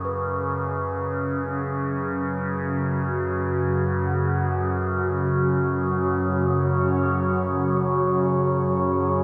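Soaked in a cathedral-sized reverb with a six-second tail and a faint cassette-tape haze, this short cut from a longer dark ambient drone piece drifts in free time over an F#5 chord, desolate and dark. Up front, a sawtooth-and-sine drone with moving overtones holds low between F#2 and C#3, while a detuned, evolving pad sustains chords from C#3 to C#5 with a resonant filter swell, both softened by chorus and slow attacks. Far in the background, a quartz singing bowl rings a pure, airy B4, struck with a felt mallet and slowly beating.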